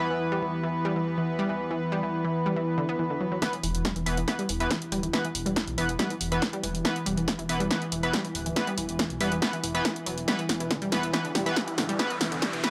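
Relentless and dark, this driving peak-time techno cut at 140 BPM in E minor opens with edgy, nasal sync-sweep polysynth stabs up front, a deep, moody ambient pad drone and a round, detuned analog pluck riff, all pumping with sidechain, before an overdriven electronic kick and a punchy analog drum machine's snare and hi-hats arrive at 3.4 seconds, joined by a thick, menacing detuned saw bass at 3.6 seconds, for a build-up with a drum fill and a filter sweep on the synth, capped by a background riser from 11.2 seconds in a dry, gritty hardware sound.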